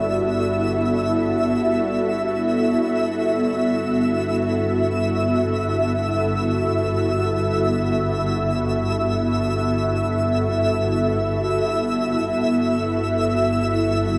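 Soaked in a huge ambient reverb with a long 8.6-second tail and the soft haze of cassette tape, this dreamy, free-time ambient passage from a longer piece feels warm and luminous. Up front, an ethereal, airy pad holds sustained chords on a Gmaj7 in G major, its mellow detuned tone thickened by ensemble chorus and a phaser. Beneath it, a dark, bowed double bass section sustains a low G with expressive vibrato and gentle portamento, fading in across the whole 14.2 seconds. An evolving analog drone sits in the background, its detuned, ring-modulated layers blurred by chorus as it fades out over the same span. High above, a twinkling granular texture adds bright, sparkling points with an octave-up shimmer, all tuned to A4 = 438 Hz.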